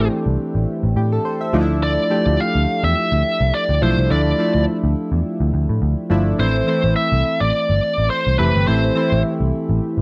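Pop with an urgent, nostalgic mood and a lightly swung feel, heard in a short cut from a longer piece, moving from A minor to D minor add nine and back. A biting, overdriven lead guitar carries the melody with slapback echo until 9.2 seconds, over glossy, chorused retro synth keys built from detuned pulse and sawtooth tones with a filter sweep. Beneath them, a dark, round, foam-muted picked electric bass sits up front in a dry, close 1970s-style studio sound.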